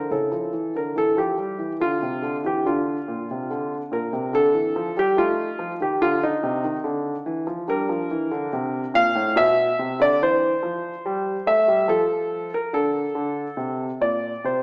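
Serene and dance-like, this 14.6-second passage cut from a longer classical, baroque-style suite movement in D minor sets a solo grand piano, present and up front with long sustain, at a rubato 71 BPM in 3/4, tuned to A4 = 435 Hz and ranging from A2 to F5 as its harmony drifts from A7 through Dm, Bb and F7 toward a closing Bbmaj9, all bathed in a wet recital-hall reverb yet heard through a small-speaker sound.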